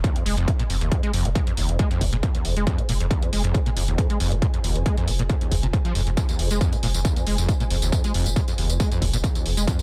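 A distorted, overdriven kick sits up front from the first moment, driving this dark peak-time techno cut from a longer piece. Alongside it from the start play a squelchy, resonant sawtooth acid riff with chorus, tape echo and sidechain pumping, a thick, saturated sub bass and tape-warm electronic hi-hats and tambourine. At 2.1 seconds an ethereal, detuned pad fades in with chorus and reverb, mellow in the background of the echo-heavy mix, and a barely audible riser appears at 9.7 seconds.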